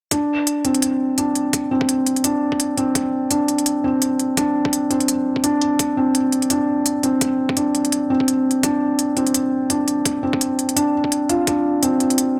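Half-time drum and bass at 169 BPM in D minor, this dark, heavy excerpt from a longer piece sets mellow, intimate felt-muted upright piano arpeggios with audible action noise up front, shaped by a low-pass filter, analog delay and a filter sweep, over smooth, tape-warm electronic hi-hats and a pitched-down, thumpy, compressed kick thinned by a high-pass filter, all within a moderate lush hall reverb and a dry, gritty hardware sound.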